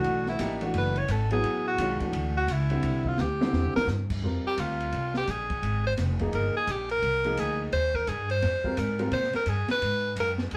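A brisk swing pulse at 172 BPM in 4/4 drives this searching, intense modal jazz excerpt, with the eighth notes swung and the harmony settling into F dorian from 4.2 seconds. A clear, present tenor saxophone takes a solo across the whole passage, sitting up front with vibrato and a subtone. Beneath it, a pizzicato upright bass with a woody tone and steel strings holds the low end, also placed up front. A smooth, vintage-toned grand piano supplies accompaniment until 9.1 seconds. The open jazz drum kit stays further down in the mix with dark cymbals, a medium-tuned snare, a boomy kick and a rolled-off top, adding a fill between 3.2 and 3.9 seconds. A wet studio reverb sets the group further back in the room, and the chords move from E13sus4 and C into Fm11 before closing on Abm7.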